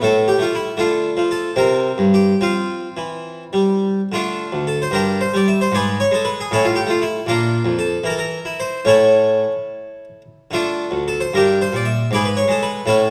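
A solo Italian-style harpsichord, plucked and brilliant with the full sound of three sets of strings, opens this flowing, solemn baroque-style suite movement, cut from a longer piece, in a rubato 6/8 at 68-80 BPM counted in dotted quarters. Its music begins in F major and turns toward D minor at 4.1 s, tuned to A4 = 437 Hz and ranging from D2 to E5. Close, detailed microphones keep the instrument up front while a wet recital-hall reverb adds a sense of space.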